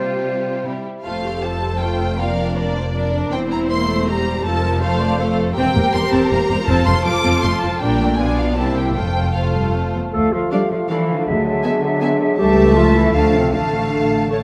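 Dramatic and urgent, this quick classical-period orchestral passage in triple time sets lush, vibrato-rich violins on a focused melody over a second, expressive violin line, smooth, even violas and cellos, and bowed double basses that enter at 1.1 s, with a brief, very quiet touch of soft-mallet timpani at 6.7 s, before the opening material returns at 10.1 s. There a pure, silvery flute, heard only briefly at the very start, comes back as mellow clarinet and bassoon and French horn chords in the background join from a distance within the roomy scoring-stage reverb.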